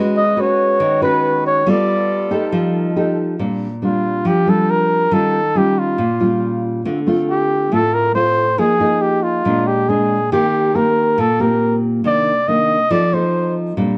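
A straight 4/4 bossa nova sway carries this relaxed, breezy excerpt, where a mellow flugelhorn with light vibrato and scooped notes sings a jazz melody up front over thumb-plucked nylon-string guitar with fresh, classical warmth, while a soft-attacked brass ensemble holds tight, mellow chords in the background for the first 3.4 seconds, all set in a moderate studio reverb captured by close, detailed microphones.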